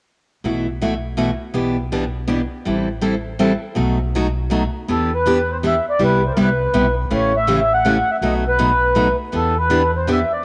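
Acoustic string swing in the jazz manouche style, this bittersweet piece moves in a swinging three-beat metre and is cut from a longer performance. A bright, picked steel-string acoustic guitar sits up front with the accompaniment, carrying a cassette-tape character, while a woody, thumpy upright bass with gut strings plays pizzicato underneath in a dark low register. The opening section rests on the guitar and bass alone, moving through sus4, minor seventh and dominant seventh chords. At 4.9 seconds a mellow accordion takes the melody, reedy and mid-forward with slow beating in its tone, colored by tape and an analog delay. The second section turns through major seventh and dominant chords before settling back on E minor seventh, and the accordion sustains until 10.4 seconds. A wet spring reverb and the home-cassette recording give the whole track a worn, intimate room sound.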